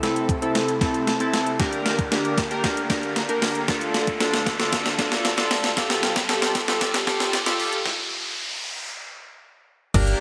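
Dance-pop with an energetic, driving feel, this excerpt from a longer piece is one continuous build-up over a straight four-beat pulse. Up front, a glossy, retro chorused polysynth blends pulse and sawtooth tones with pulse-width modulation and a filter sweep, sitting over a smooth, mellow supersaw of detuned unison saws that holds sustained chords in the background. Both pump against the beat, moving through Am, Gm, Dm and Fadd9. A crisp, overdriven 8-bit drum machine, with a thumpy kick, a medium-tuned snare, hi-hat and crash, plays a fill until 7.9 s, when the music stops. Underneath, a riser and downlifter carry the tension, and at 9.9 s a snappy, metallic FM slap bass lands on a single low G. The bright 1980s-style digital production is bathed in a lush hall reverb.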